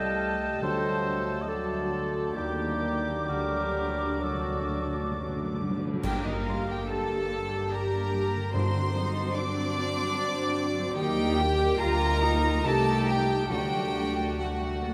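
A rich, intimate chamber violin section carries the melody high above this slow, elegiac G minor movement for symphony orchestra in 3/4, moving with rubato at 63-76 BPM, its bowing sul tasto with light vibrato inside a vast, echoing cathedral reverb. A clear clarinet, silver concert flute and close oboe add second lines beside a floating symphonic violin section, while dark, woody violas, a mellow bassoon and distant, roomy French horns fill in beneath, the winds and horns falling away by 5.7 seconds. Ringing harp arpeggios, pure cellos and shadowy double basses ground the melancholic passage. Very quiet, articulate timpani enter at 0.6 seconds and add a fill, and a bright cymbal swell, clash cymbals and concert bass drum join from 3.3 seconds to mark an accent into the next section.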